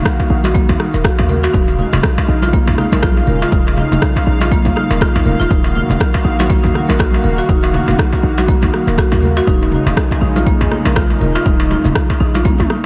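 Driving and hypnotic, this afro house excerpt is cut from a longer piece and rolls along with a swung sixteenth-note feel, its whole mix soaked in a dreamy cathedral reverb. A punchy, overdriven electronic kick pairs with a deep house kit of rim click, shaker and toms carrying its own overdrive grit, while crisp, high darbuka and ringing congas played with hard hands fill in the acoustic percussion, the congas sitting in the background. A deep, boomy 808-style bass with a sine body and noise layer pumps against the kick, and a marimba with medium mallets spins woody arpeggios through a diffuse ambient delay. Over it all, a smooth, detuned sawtooth pad holds sustained chords with chorus, vintage 12-bit sampler grit and sidechain pumping, moving between Ebmadd9 and Db/Eb. A drum fill closes the passage at 12.5 seconds.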